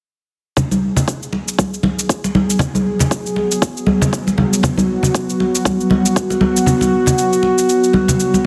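Ringing, medium-tuned congas sit up front in this driving, hypnotic afro house excerpt, their hard-handed acoustic tone carrying the sound of a live room over a swung sixteenth-note feel. Alongside them, a warm, smooth analog pad of detuned sawtooth voices sits up front, holding a G#m7 chord with a slow attack, colored by chorus and pumping against the sidechain. A deep, tape-warm electronic kick sits forward in the mix with a high-pass filter and studio reverb, while a produced cabasa adds its own studio-reverbed shimmer. The kick stops at 6.3 seconds, leaving the congas, cabasa and pad to carry the groove to the close at 8.5 seconds. A moderate, lush hall reverb surrounds the mix, and heavy multiband compression gives it a dense, radio-ready punch.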